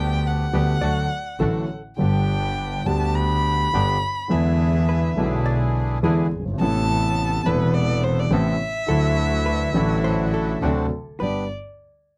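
A dry, close studio sound with light reverb and a 1970s character frames this playful, nostalgic tango excerpt in G major, moving at 104 BPM in 4/4 with a rubato feel. A bowed violin carries the solo with vibrato, soft attacks and expressive portamento. An up-front grand piano with short sustain accompanies, a rich bowed double bass adds biting, airy, intense vibrato below, and a reedy, vintage bandoneon punctuates with stabs. From 0.8 s a clean, dark, picked hollow-body electric guitar joins as a compressed second line, while the harmony passes through E7, Amadd9 and Dadd9 before settling on G.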